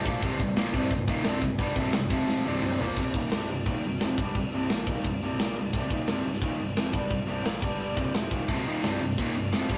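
A tight, bright distorted guitar riff drives this aggressive, epic heavy metal excerpt in C minor at 174 BPM, joined by a high-gain second guitar that drops out at 3.0 s and returns at 8.5 s, over an up-front, mid-forward acoustic drum kit with a tight kick and a fill at 2.3 s, and a very quiet, growly fuzz bass, the whole take captured in a rough small rehearsal room with a dark, saturated sound.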